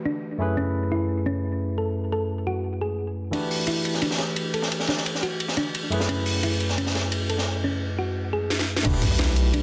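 Dreamy and melancholic, this liquid drum and bass excerpt at 174 BPM opens with a very quiet downlifter over a bright, barky tine electric piano with light overdrive and delay moving between F#m11 and Em11, while a round, mellow FM thumb-piano-like synth pluck plays chorused, tape-echoed arpeggios under a filter sweep; a dark, gritty breakbeat kit with a high-tuned snare enters at 3.3 s, joined for a stretch by barely audible dry bongos; an overdriven drum and bass kit with a cracking snare comes in at 8.5 s with a drum fill, and a tight electronic kick and a deep, thick saturated sub bass land with a sub drop at 8.8 s, set in a dense, heavily limited master with plate reverb and small room ambience.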